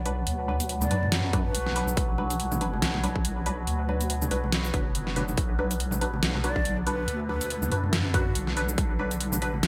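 This excerpt opens on an overtone-sweeping drone holding a sustained B minor chord, its resonant, ring-modulated tone blooming slowly under chorus and built-in reverb, while a deep soft wobble bass sits up front with a saturated, detuned weight. Within the first second a filtered dub chord stab joins with muted, sawtooth-edged plucks coloured by phaser, 12-bit sampler grit and dub echo, alongside an overdriven dubstep kit of deep snare, metallic hats and shaker, and congas played with soft hands in the background. The piece is dark, meditative deep dubstep in 4/4 at 141 BPM with a half-time feel and a light swing on the sixteenths. A breathy, end-blown ney carries the melody in two phrases, first from 0.8 to 2.0 seconds and again from 6.4 seconds, its close-miked vibrato trailing into dub echo. A punchy, overdriven electronic kick drum enters at 1.3 seconds and anchors the groove up front. 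The whole sits in a light digital ambience.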